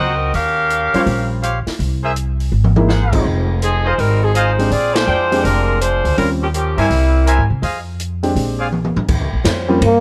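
Big band swing with a brassy, swinging mood, this short cut from a longer piece rides a triple-feel eighth-note lilt over a bright dominant harmony. A clear saxophone section with light vibrato carries the melody up front, while a warm trumpet section with a vintage edge punches out stabs. A woody, thumpy upright bass plucked on steel strings sits prominently under an open acoustic drum kit with dark cymbals and a boomy kick, which plays fills near 2.5 and 8.7 seconds and joins the band for an accent at 4.9 seconds. A concert grand piano with deep bass and short sustain comps through the changes, and at 9.4 seconds a saxophone section with soft attack slips in behind with sustained chords, shortly before a veiled, breathy trombone in a bucket mute appears at 9.9 seconds for a single whispered note. The sound is dry and intimate, caught by close, detailed microphones.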